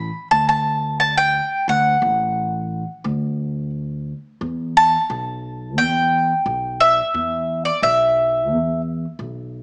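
This short excerpt is led by a bright bowl-back mandolin, picked on doubled strings and placed up front, carrying the melody between D5 and B5 until it stops at 8.8 seconds. Beneath it, an upright bass played pizzicato on steel strings gives a woody, warm low line from A1 to E2, sitting well back in the mix and sounding on until 9.6 seconds. The piece is indie folk in E minor with a building arrangement, moving at 88 BPM in a straight 4/4, and its mood is yearning and stirring. The harmony rests on D before shifting to E minor at 4.4 seconds, where a second section begins. A moderate recital-hall reverb surrounds the pair, while the overall sound has the character of a small speaker.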